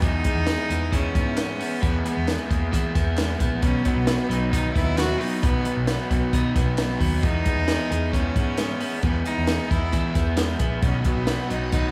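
A small room ambience and light reverb frame this short, breezy stretch of jangly indie pop, cut from a longer piece and moving at 133 BPM in a straight 4/4 over chords alternating between E and B. A single cello carries the melody up close, its sound rich and floating, with a soft attack and an airy sul tasto bow that keeps the tone pure. Beneath it, a crunchy, bright overdriven guitar picks out the accompaniment, while a clean, compressed electric guitar plays picked arpeggios further back in the mix. A vintage picked bass, foam-muted and amped, adds a dark, round low end, and a compact cocktail drum kit sits up front with a dry, high-tuned snare, a punchy kick and hi-hat. Crisp group handclaps are barely audible from 0.5 seconds, and at 10.8 seconds a shimmering sawtooth string machine of violins slips in behind everything else with full-bodied sustained chords and an ensemble chorus, giving the youthful passage a vintage sheen.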